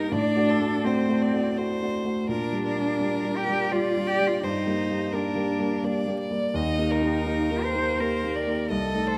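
Classical, a slow romantic movement for piano trio in G minor at 84 BPM in 3/4, played with a yearning, melancholic rubato feel in this short cut from a longer piece. A clear, focused violin carries the melody with vibrato, while a smooth, up-front cello sings a second line beneath it and a dark, mellow, slightly worn baby grand piano supplies the accompaniment over chords moving from D7/A through Gm/Bb and Gm to Eb. Close, detailed microphones catch the players within a moderate concert hall reverb of 1.8 seconds.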